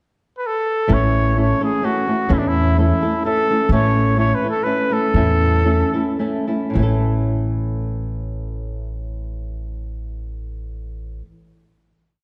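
Festive and proud, this complete mariachi piece in the Mexican folk tradition moves in a swinging triple metre with a rubato feel. During a pickup bar, the clear trumpet enters at 0.4 seconds with a classical-style solo melody built from call-like motifs, its light vibrato and soft attack placed up front. Flamenco guitar joins at 0.9 seconds, fingerpicked and folk-strummed on open chord shapes with a warm acoustic tone. The pizzicato upright bass, woody and growly on steel strings, plays root and fifth on the main beats. The music slows from 3.7 seconds, the trumpet drops out, and guitar and bass sustain the final chord, all wrapped in a wet recital hall reverb and a dark production.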